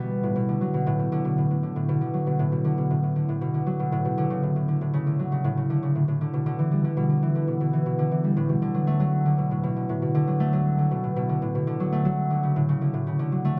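Folktronica with a wistful, delicate mood, carried entirely by a solo concert harp that plays for the full 13.6 seconds of this short cut from a longer piece. The harp is bright and ringing, thumb-plucked in its lower register and placed up front, with a delay effect trailing its notes through a moderate studio reverb. Chords move through Bm7, Dmaj7 and Em7 before a second section at 8.4 seconds returns to Bm7 and settles on Dmaj7.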